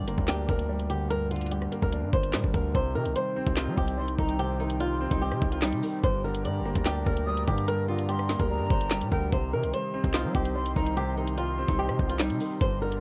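Menacing and tense, this drill passage is cut from a longer hip hop piece and rides a half-time feel, its dry sound worn like old cassette tape with a warbly pitch drift. A fingerpicked flamenco guitar carries the melody with audible finger squeak, softened by a low-pass filter and trailed by delay. Beneath it, a dark, mellow grand piano, also filtered, supplies the accompaniment. Up front, an overdriven electronic drum kit pairs a knocking kick and woody snare with bright hats, rim clicks and handclaps, while a heavy, saturated 808-style bass growls underneath with a fast attack and decaying tail. At 2.7 seconds a smooth analog pad with a slow attack and chorus settles into the background, and from 4.0 seconds until 12.2 seconds a breathy, close-miked jazz flute adds a second line with vibrato, tongued notes and delay.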